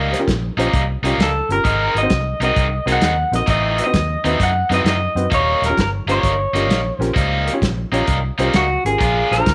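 A swung shuffle in four drives this laid-back, soulful electric blues fragment, with a soul drum kit of hi-hat, tight kick and medium-tuned snare joining at 0.1 seconds beside a round, punchy, foam-muted fingered bass. Up front, a lo-fi, slightly broken-up lead guitar through a small old amp carries the melody while a bright, overdriven garage guitar picks out a raw riff that stops at 9.4 seconds. A woody upright piano fills in softly underneath, all set in light reverb and small room ambience as the chords move from Eb7 through Ab7 and a passing Adim7, back to Eb7 before landing on Bb7.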